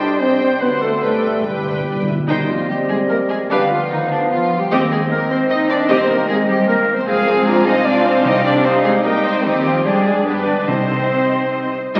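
A quick classical-period movement for symphony orchestra, this lively, spirited passage in 3/4 moves with a rubato feel, cut from a longer piece. The violins carry the melody in a rich, focused, bowed ensemble tone set in the background, while a second violin line adds lush, expressive richness, joined by a pure, soft-attacked silver flute and a clarinet in the background. The viola section sits up front with a smooth, even accompaniment, supported by a bassoon with light vibrato and a dark, distant French horn section holding sustained chords. Cellos and double basses anchor the bass in the background, and timpani struck with hard mallets sound close and dry, first in a fill from 1.0 to 2.3 seconds and again from 8.3 seconds. The whole is bathed in concert hall reverb and carries the crackle and aged character of a very old 78 rpm record.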